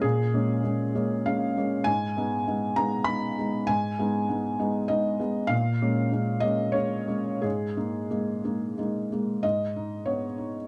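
A felt-muted upright piano plays alone from the opening, its soft, mellow tone sitting up front with audible action noise and a natural, light reverb. This intimate, melancholic neoclassical minimalist fragment moves in a rubato 3/4 at roughly 88-102 BPM in G# dorian, spanning G#2 to B5 as the harmony drifts between A#m7, G#m and G#sus2. A new section begins at 9.4 seconds, settling on G#m before the fragment of a longer piece ends at 10.7 seconds.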